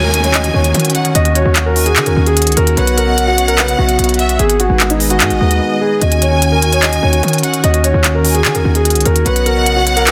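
A dense, heavily limited modern mix with light reverb frames this melancholic, brooding cut from a longer trap piece, set at 148 BPM in 4/4 with a half-time feel, in Eb minor and tuned to A4 = 438 Hz. A dark baby grand piano with long sustain carries the melody through tape echo, while a clear, focused studio violin section, bowed with vibrato and lush in ensemble, adds a close second line, also touched by tape echo. Beneath them, a clean tine electric piano heard through its built-in speakers supplies mellow accompaniment, and a smooth, detuned sawtooth pad with a moving notch, soft attack, long release and chorus sustains chords in the background. Up front, a punchy, heavy 808-style bass with a sine body, noise layer, fast attack and decaying tail anchors the low end, joined from 0.1 s by a crisp, produced electronic trap kit with handclaps and hi-hats. An electronic downlifter sits in the background for the opening 2.8 s, the harmony moves from Ebm7 through Bsus2 and Abm back to Ebm7 before returning to Bsus2, and a brief break arrives at 5.6 s.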